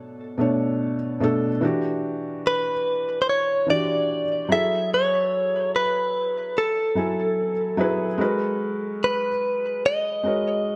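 Longing and late-night in mood, this slow R&B excerpt at 73 BPM opens on a soft, felt-muted upright piano whose mellow chords and audible action noise sit close and intimate, moving through minor ninth harmonies from Bm9 to G#m9. At 2.5 seconds a clean, direct-recorded electric guitar enters up front with a compressed, picked melody coloured by tape echo. The dark production places both in a moderate stage reverb with a small-room touch, giving the short passage a hushed, vintage glow.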